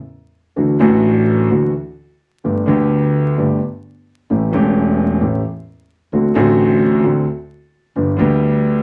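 The rhythm moves in a loose, rubato four, pushing and pulling with the sultry, tense sway of a tango. After a brief silence, a concert grand piano and an upright bass come in together at 0.6 s and carry the passage to its close at 8.8 s. The piano sits up front, with a warm, boxy tone, a deep low end and a long sustain as it lays out the accompaniment. Beneath it, the pizzicato upright bass stays in the background, its gut strings giving a woody, dark and thumpy voice. The harmony steps from Dadd9 to Gadd9, then through A7 and D7 before settling on G. A moderate studio ambience and a layer of vinyl crackle frame this short cut from a longer piece.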